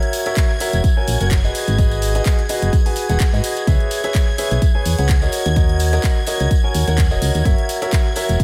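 A concert grand piano carries the riff in this soulful, bittersweet piano house excerpt, its boxy, intimate tone showing audible action noise, deep bass and long sustain, roughened by vintage 12-bit sampler grit, spread by a diffuse ambient delay and pumped by sidechain. Behind it, a string machine of violins holds high sustained chords with a shimmering, bright sawtooth character, slow attack and ensemble chorus, also pumping with the sidechain. The groove runs at 127 BPM in 4/4 with a light swing on the 16ths. House kit handclaps and hi-hats with warm hats are there from the start, a compressed, saturated tambourine with maraca and group-clap colour sits in the background from 0.1 seconds, and a punchy, layered electronic kick arrives up front at 0.4 seconds. At 0.7 seconds a round, mellow FM bass with a fast attack and decaying notes joins, also up front and pumping. The harmony in G# minor moves through F#7, G#m7, C#m7 and D#m7 before returning to F#7, all under a light reverb.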